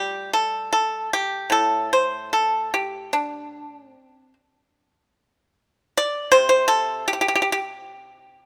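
Chinese traditional solo plucked-string music in a contemplative, longing mood, this short fragment of a longer piece features a lone acoustic pipa played with fingerpicks, bright, dry and percussive, sitting up front under close, detailed microphones with light reverb as it moves in a rubato 2/4 around 71-81 BPM across a range from A2 to D5, shifting into a new section at 4.8 seconds before the fragment ends at 8.5 seconds.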